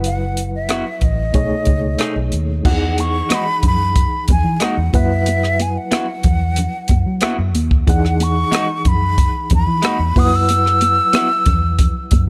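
Lush 1970s-style soul at 92 BPM in E major, smooth and romantic, cut from a longer piece, where a breathy, vibrato-laced concert flute carries the melody up front over a reedy electric piano with fast tremolo, a round, foam-muted fingered electric bass, a dry compact cocktail kit with dark cymbals and a punchy kick, a slightly broken-up lo-fi electric guitar riff through a small old amp, and high-tuned congas that join in the background at 2.7 seconds, all set in a small room around chords moving from F#7sus4 and B13 to Emaj9.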